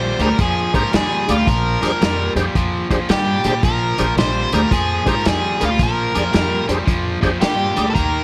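A biting electric guitar carries the melody up front, its picked lines sitting between F4 and C5 in this gritty, soulful electric blues shuffle in Bb mixolydian at 111 BPM, with a swung eighth-note feel in 4/4. Beneath it, a cranked stack guitar plays a bright, overdriven riff in the low register, also picked and placed up front. A woody upright bass with steel strings is played pizzicato, and a full, clean tonewheel organ fills the middle through a slow rotary speaker and chorus vibrato, entering at 0.2 seconds and stopping at 7.9 seconds. A vintage acoustic drum kit of hi-hat, kick and snare, with a tight kick, a medium-tuned snare and a muffled, lo-fi, rolled-off top, also comes in at 0.2 seconds. The passage, cut from a longer piece, rests on a single Bb13 chord within small room ambience.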